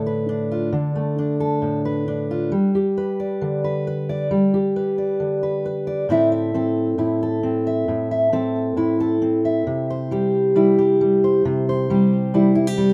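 A fingerpicked steel-string acoustic guitar carries this short folk piece alone, its full-bodied jumbo tone sitting up front in a rough home-demo mix with moderate studio reverb. In A minor at 134 BPM with a straight 4/4 feel, the mood is bittersweet and yearning as the chords move from Dm to G, then shift at 6.1 seconds into a second section built on Am and C. Spanning from A2 up to E5, the playing stops at 12.9 seconds, cut from a longer piece.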